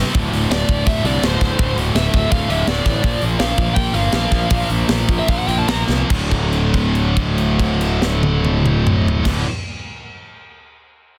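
Two bright, picked electric guitars, one overdriven and one scooped and high-gain, open a dark, relentless heavy metal riff in D minor at 141-166 BPM, joined at once by a growly, fuzz-laden bass and a tight, polished, airy drum kit that sits up front with a high-tuned snare and a tight kick, while a warm, distorted lead guitar with delay solos from 0.5 s to 5.8 s as the pace slows from 3.0 s, and a drum fill at 5.9 s leads into a held note within a dense, heavily limited modern master.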